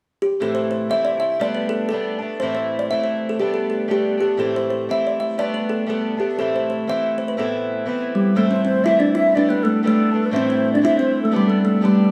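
Driving and spirited, this Celtic polka in A minor moves at 121 BPM in 2/4 with a swung eighth-note feel, and it is cut from a longer piece. A kalimba carries the melody from the start, its woody fingertip plucks short, mellow and placed up front. A fingerpicked twelve-string acoustic guitar enters just after it to accompany, boxy and shimmering with octave-doubled strings and the occasional finger squeak. At 8.1 seconds a breathy wooden flute joins on a second line, close-miked, tongued and expressive with vibrato. The harmony alternates between Am and Gadd9, briefly touching Amadd9 before the phrase repeats, and the band plays live together in one room with a moderate large-studio reverb.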